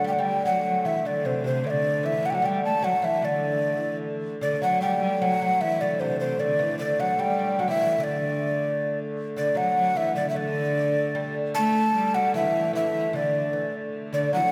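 Medieval music in D mixolydian, a rustic and festive excerpt cut from a longer piece, moving in a straight 3/4 at 151 BPM with A4 tuned to 438 Hz. A breathy, hollow tenor recorder carries the melody up front with chiff and vibrato, while a bright, fingerpicked lute on double gut strings and an intimate, fretted viola da gamba with an airy bow play a second line beneath it over a smooth, wheel-bowed hurdy-gurdy drone. All four play throughout the 14.5 seconds, with the music shifting into a new section at 9.2 seconds, set in the long, wet reverb of a church or concert hall.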